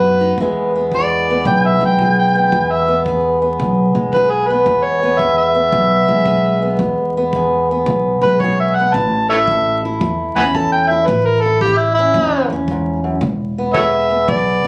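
An amplified, overdriven harmonica leads this soulful acoustic country blues excerpt, its gritty solo line sitting up front with light vibrato, tongue slaps, scooped notes and a jazz-inflected phrasing. Beside it, an old ladder-braced acoustic guitar is fingerpicked on old strings, giving a dark, boxy accompaniment that also sits close to the listener. A pizzicato upright bass with gut strings adds a thumpy, woody foundation. A tight kick drum, played with brushes in a natural studio room, enters at 0.4 seconds and stays in the background. The swung groove moves from E to A at 8.9 seconds and back to E at 13.2 seconds. The sound has the feel of a phone recording made in the room, with club reverb, vinyl crackle and compression.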